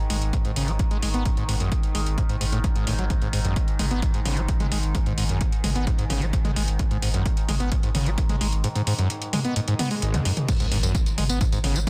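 A screaming, distorted acid line sits up front in this driving peak-time techno fragment at 130 BPM in G# minor, its squelchy, resonant sawtooth tone carrying a filter sweep, subtle chorus and delay as it breathes with sidechain pumping. Beneath it, a deep, thick saturated sub bass holds G#1 with overdrive and a low-pass filter, while a punchy, layered electronic kick drives the straight 4/4 pulse from the front of the mix. A techno drum kit adds metallic hats, tambourine, toms and crash cymbal, all ducking with sidechain pumping. A nasal, bright drone with moving overtones and its own built-in reverb hums quietly behind the riff before stopping at 10.5 seconds. A very quiet electronic swell rises from 9.8 seconds into a drop and impact at 10.5 seconds, all inside a dense, heavily limited master with a dry, intense character.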